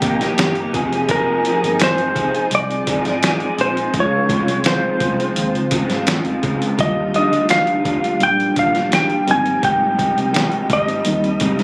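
Indie pop with a bedroom pop feel, this nostalgic, dreamy fragment from a longer piece moves at an unhurried, straight pace. A clean, dark lap steel played with fingerpicks carries the slide melody up front, dressed in lush chorus and tape echo, while a slightly broken-up electric guitar through a small old amp picks the accompaniment beside it with ensemble chorus and vibrato. A gritty, compressed sampler-style drum kit with a thumpy kick and a medium-tuned snare sits forward in the mix, and a round, foam-muted fingered bass sits in the background under a very quiet, cloudy granular pad that holds blurred, evolving chords. At 6.8 s a worn, reedy electric piano, slightly out of tune, joins in the background with a fast tremolo through its built-in speakers. The harmony drifts through Cm7, Fm7, Dbmaj7, Ebmaj9 and Abmaj7, and the whole thing has the intimate, roomy character of a phone recording made in a club-like space.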